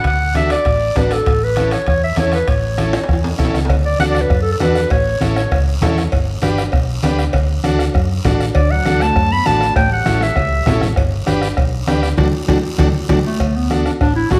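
A clear, close-miked clarinet leads this joyful, sunny cumbia excerpt, its classical-style melody sitting up front in phrases that drop away and return across the short clip. Underneath, a dark, round hollow-body electric bass and a bombo struck with a soft beater hold down the bottom, while a buzzy vintage combo organ with light vibrato fills in the chords from just after the start. The percussion is layered: raspy, dry guiro up close, low-tuned congas with a thick skin played with soft hands further back, and ringing metal-shell timbales and cowbell in the background. A dark, clean electric guitar adds a fingered second line from 8.6 to 13.2 seconds, and drum fills and a band accent mark the turns, with an accent from 12.2 seconds leading into the return of the opening theme. The whole band sounds heard from further back in a large studio with a generous, wet reverb, giving the brisk dance groove a spacious, festive glow.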